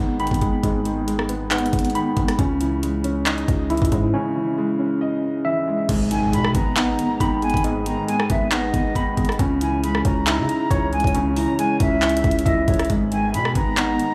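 A half-time trap beat at 137 BPM drives this hard-hitting, eerie hip hop excerpt in G# minor, with an up-front electronic kit of knocking kick, bright hi-hats, handclaps, rim clicks and crash over a growling, buzzy 808-style bass, while a soft, boxy felt-muted upright piano with audible action noise and a clean tine electric piano playing tape-echoed arpeggios fill out the low-passed accompaniment, a background impact lands at 5.9 seconds, an airy, distant concert flute with vibrato carries a tape-echoed second line from 6.1 seconds, and a detuned, sweeping resonant pad with chorus and phaser slips in behind at 13.2 seconds.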